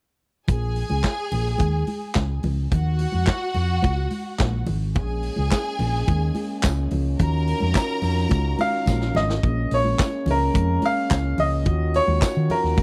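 This dry, close recording has the small-room sound of a 1970s studio, and this fragment of a longer disco piece feels glamorous and danceable in a straight four. A gritty, saturated vintage drum kit sits up front with a punchy kick, medium-tuned snare, hi-hat and handclaps. A dark, round hollow-body electric bass, played with the fingers, carries the low end under Bbm7 and Ebm9 chords. Bowed strings add a lush, focused second line with vibrato and slapback echo, set distant in the mix, while thick-skinned congas sit in the background. A French horn section joins at 5.0 seconds with smooth, classical-style sustained chords, and a jingly tambourine enters in the background at 5.5 seconds. An intimate baby grand piano takes the melody from 8.6 seconds, its action noise audible and its notes ringing with long sustain, and a drum fill at 8.9 seconds marks the move into the closing stretch.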